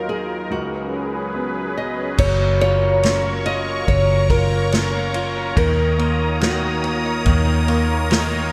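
Hopeful and tender, this pop ballad excerpt opens with a small, fingerpicked nylon-string guitar melody, finger squeak and all, trailing diffuse ambient delay over a brilliant grand piano with analog chorus and an airy, detuned sawtooth pad that evolves with slow attack and long release; at 2.2 seconds a round, foam-muted electric bass arrives up front alongside a distant, roomy acoustic drum kit played with bundle sticks and dark cymbals, and a very quiet, compressed clean electric guitar picking arpeggios, the whole mix soaked in a huge, dreamy reverb.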